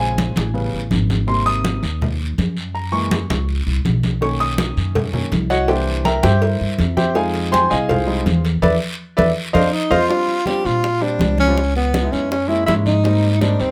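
Afro-Cuban jazz at a danceable, sophisticated 163 BPM in 4/4: an intimate, up-front grand piano with audible action noise takes a solo over woody pizzicato upright bass, ringing congas and a raspy, saturated guiro; round, low-tuned cowbell and bongos join in the background at 4.2 seconds; and amid a band accent and fill, a breathy, whispered tenor saxophone with vibrato, scooped notes and plate reverb enters up front at 9.6 seconds as the chords move through rich sevenths and ninths in this close, detailed recording cut from a longer piece.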